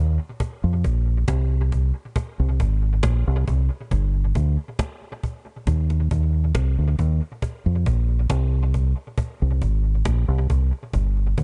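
A deep dub fingered electric bass opens this short roots reggae excerpt, round and punchy, sitting up front with a direct, amped tone as it moves between G1 and F2. At 0.2 seconds a cajon joins, woody and acoustic, struck with hard hands, its faint snares audible in a close, dry sound that carries an analog delay. The tempo is a relaxed 68 BPM in a straight 4/4, giving the groove a hypnotic, laid-back feel. The bass dominates the balance, with the cajon sitting noticeably lower beneath it. The production is dark and warm with a small room ambience, and the top end stays rolled off, so the pair sounds heavy and intimate through to the cut at 11.4 seconds.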